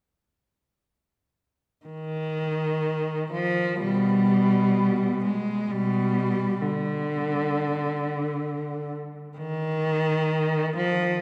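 Yearning and meditative, this short classical passage, cut from a longer piece, gives a solo cello room to move freely and expressively with a rubato feel. A single player draws a rich, smooth, even bowed line with vibrato between B2 and Ab3, sounding up front from 1.9 to 11.2 seconds. A lush church reverb with a long tail surrounds the cello, giving the impression of listening from further back in the hall.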